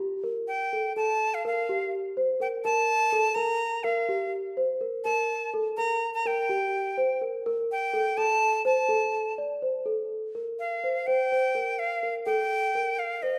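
Restless and shimmering, this excerpt of contemporary chamber music moves in a straight 5/8 at 249 eighth-note beats per minute, tuned to A4 = 435 Hz, with a delicate, bell-like celesta playing up-front arpeggios from the start while a breathy, bright jazz flute carries a reedy, vibrato-laden, tongued melody from 0.5 seconds, both set in a wet recital-hall reverb over harmony that circles G minor colours before a new section at 9.9 seconds turns toward Bb5 and Am7.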